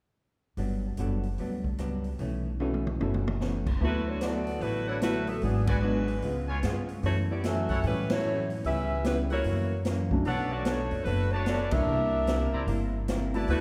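Heard from further back in a reverberant scoring stage, this joyful, brassy big band swing piece moves at 149 BPM in D major, with growly pizzicato upright bass up front, a dark, clean hollow-body archtop guitar and a natural-sounding acoustic drum kit with a punchy kick, the drums adding a fill at 2.6 seconds. An intimate concert grand with audible action noise sits in the background, and the mellow, smooth-topped saxophone section takes the melody with light vibrato at 3.8 seconds, joined at 4.9 seconds by tight, brilliant trumpet stabs. Full-band accents punctuate the swing over rich harmony such as Gmaj7, D69 and Bm9.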